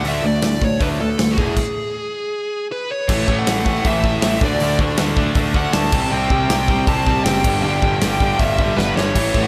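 A dark, smooth lead guitar sits up front, its overdriven, picked melody carried on a trail of delay across this rowdy, rebellious slice of punk rock in straight 4/4. Beneath it, two overdriven guitars play the riff from the background: a bright, picked electric and a hollow-bodied semi-hollow coated in slapback echo. A fuzzed, growly picked bass anchors the low end, while a big acoustic rock kit with punchy kick, medium-tuned snare, hi-hat and bright crash cymbals drives everything forward. The band hits a stop from 1.6 to 3.1 seconds before charging into the next section, and a drum fill at 8.8 seconds closes out this cut from a longer piece. A moderate concert hall reverb lends the whole thing a big arena sound.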